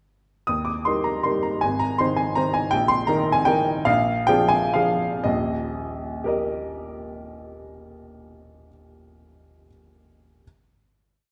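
A classical piano waltz, graceful and playful, this brief complete piece is played on a solo upright piano in a free, rubato triple metre. The instrument sounds woody and slightly detuned, with a short sustain, and it sits up front as it carries a single-line melody over a waltz bass that reaches deep into the low register. The harmony moves gently through tonic, subdominant and dominant-seventh chords, and the playing slows down from 2.2 seconds until the phrase settles at 5.2 seconds. A final chord then follows from 5.2 to 8.2 seconds, and the piano's sound ends at 10.4 seconds. The piano itself has a bright, brilliant tone, while a wet recital-hall reverb, a dark, warm overall production and a faint mains hum shape the character of the recording.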